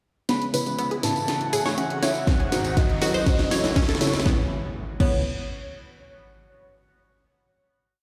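A deep, up-front electronic kick drives this bittersweet, dreamy progressive house piece in C# minor at 121 BPM, arriving at 2.3 s with a steady four-on-the-floor pulse beneath a build-up that runs to 4.3 s. Around it, a layered house drum kit supplies a cracking, tape-toned snare backbeat, programmed closed and open hats, a crash and a drum fill, while a jingly acoustic tambourine plays hand-played sixteenths in the background. A bright, round analog pluck spins a 12-step arpeggio that drifts against the bar, and a soft, nasal chord stab hits off-beat close-voiced chords; both carry chorus, dub echo, sidechain pumping and a filter sweep through the build. A lush, airy unison pad holds the C#m7, Amaj7, G#7 and F#m7 changes with phaser and 12-bit sampler grit, and a very quiet, fat, detuned sawtooth bass adds a dotted rhythm underneath. On top, a dark, octave-layered synth lead sings a motif-based melody with vibrato, tremolo, cassette-tape colour and digital delay, while a glassy texture of drifting overtones holds a high note in the background and an electronic riser and impact ease the music into a final C#m7 chord that rings out to 6.2 s. 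The whole piece sits in a moderate hall reverb, heard as if played over a big sound system in a bare room.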